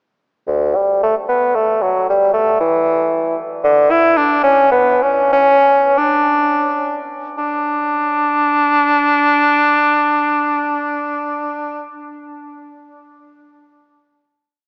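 Set in a flexible, rubato 3/4 that moves between 81 and 118 BPM, this baroque-style fantasia for unaccompanied bassoon in D major has a radiant, flowing mood. The clear bassoon plays alone and up front from 0.5 to 11.9 seconds, spinning a classical-style melody with light vibrato that leaps down to bass notes, ranging from D2 to E4. The tempo slows from 2.9 to 7.4 seconds, and from 7.4 seconds a single final note is held to close the whole piece. A cathedral reverb with a long 5.6-second decay surrounds the instrument. The sound is worn and warbly, like old cassette tape with drifting pitch heard through a small speaker.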